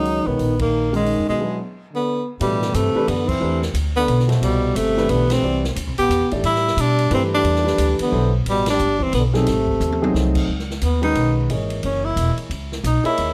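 Searching and hypnotic, this modal jazz piece in swung 3/4 sets a clear, close-miked tenor saxophone on the melody with vibrato and plate reverb over a breathy, whispered trombone second line in the background until 10.1 s, warm baby grand piano accompaniment, a woody, thumpy upright bass up front and an open jazz drum kit with dark cymbals and a boomy kick, the band hitting accents and pausing for a break at 1.4 s before a drum fill leads into a tenor saxophone solo at 10.5 s.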